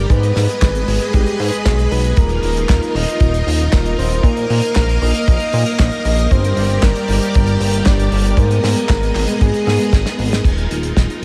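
Soaked in a huge ambient reverb, this dreamy, playful and romantic italo disco passage moves at a straight 116 BPM in 4/4 and sits in Eb major. A lush, vintage string machine holds full-bodied sustained chords with an ensemble chorus, while a glossy, retro synth bass sits up front, mellow and plucky, carrying the low end. The melody comes from a soft, round, octave-layered synth lead with a dark edge and gentle vibrato, colored by chorus and delay, and it drops out at 10.2 seconds. A damped 70s drum kit with a medium-tuned snare, hi-hat, handclaps and crash cymbal sounds dry and rolled-off beneath its studio reverb, and a tight, prominent kick drum anchors the beat. The harmony moves through Abm, Ebsus2, Bbsus4 and Gm, and a drum fill from 9.7 to 10.4 seconds turns the phrase back to Ebsus2.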